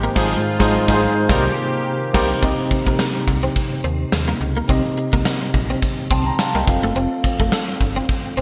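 A tine electric piano sits up front with a medium tremolo through a combo amp, carrying the chords of this moody, urgent 1980s-style pop fragment in C dorian at 106 BPM with a light 16th-note swing. A gated, bright-cymbaled drum kit punches in at 0.2 seconds alongside tight, octave-doubled horn stabs that ring clear until 2.3 seconds, while a brassy, detuned sawtooth pad with chorus and a filter sweep holds chords in the background until 2.4 seconds. Beneath them a snappy FM bass with a metallic attack and a compressed, picked twelve-string guitar riff bathed in ensemble chorus and digital delay fill out a bright, digital production with lush hall reverb.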